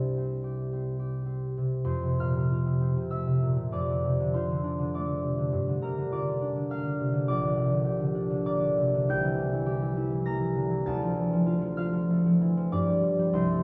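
Moving in a flexible, rubato three-beat metre, this serene and dreamy classical piece for solo concert harp unfolds at an unhurried, breathing pace. The harp is the only voice, heard up front with a bright, ringing, thumb-plucked tone that spans from the deep Bb1 up to a shimmering Bb6, and it is tuned slightly below standard pitch, to A4 = 436 Hz. A brief opening passage gives way at 1.9 s to a longer second section, where the harmony drifts gently through chords such as Dm/F, Gm7 and C7 before settling on Dm and finally an open G5. A lush recital-hall reverb surrounds each note, and the listening position sits further back in the room, with a hint of small-room ambience. Cut from a longer work, the passage runs to 13.6 s and feels like a quiet, suspended moment rather than a complete statement.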